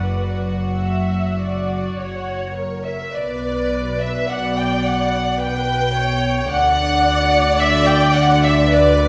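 A chamber violin section opens with an intimate, yearning melody, shaded by light vibrato and a soft attack, over a floating second violin line, a dark, woody viola accompaniment, and pure-toned cellos and double basses carrying the bass, every part bowed sul tasto. This elegiac, slow romantic movement for string orchestra sways in three with free rubato, moving from Bm/F# to F# before settling onto Bm at 3.1 seconds and Bm/D at 6.5 seconds. A wet scoring-stage reverb from a church or concert hall surrounds the ensemble in this 9.1-second passage cut from a longer piece.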